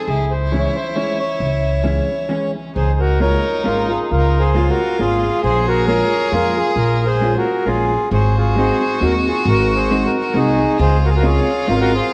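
A swung 3/4 lilt at 134 BPM drives this whirling, bittersweet musette waltz in Db major, cut from a longer piece, where a reedy, up-front accordion carries the melody over a distant, biting bowed violin line with light vibrato, a woody pizzicato upright bass with tube saturation, and a dark, compressed hollow-body electric guitar picking out clean accompaniment, all set in a concert hall reverb and coloured by worn, warbly cassette tape drift as the chords move from C#m to a closing Dbmaj7 at 10.8 seconds.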